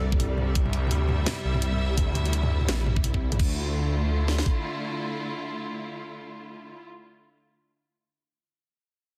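A dense, heavily limited modern mix with light reverb frames this short, dark and spacious fragment of half-time drum and bass at 169 BPM in D minor, swung on the sixteenths and opening on a drop. A rich, bowed studio string section holds sustained chords with vibrato and sidechain pumping through to 6.9 s, moving from Csus2 to Dmadd9 at 3.4 s, while a deep, rumbling detuned saw bass sits up front until 4.4 s. Two layered electronic drum kits drive the groove: one pairs a knocking kick with a cracking snare, and the other adds crash cymbal, hi-hat, snare and toms.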